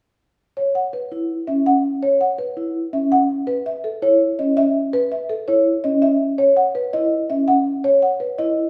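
This is classical minimalist pattern music, a short excerpt cut from a longer piece, with a bright, propulsive mood and a straight 4/4 pulse. A marimba played with soft mallets carries the melody from 0.6 seconds, its padauk bars giving a woody, round and airy tone that stays mellow and close. At 1.1 seconds a soft-mallet vibraphone joins with arpeggios, its metallic, ringing voice darker and smooth, shimmering with a fast motor vibrato. The two parts share a single rootless Bsus4 harmony and play together until 8.6 seconds. Both sound near and present, yet a generous large-studio reverb places the pair further back in a spacious room.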